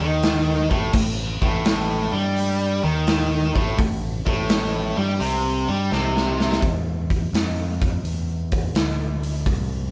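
A swung 4/4 groove at 84 BPM drives this smoky, heavy slice of blues rock and southern rock in A minor, played live as a power trio in one room with light reverb. A tight, bright, double-tracked distorted guitar riff sits up front over a growling, overdriven fingered bass and a big acoustic kit with a punchy kick, medium-tuned snare and sparkling cymbals. A drum fill from 5.9 to 6.6 seconds ends the guitar's part, leaving bass and drums to carry a rootless A minor until the bass stops at 9.9 seconds.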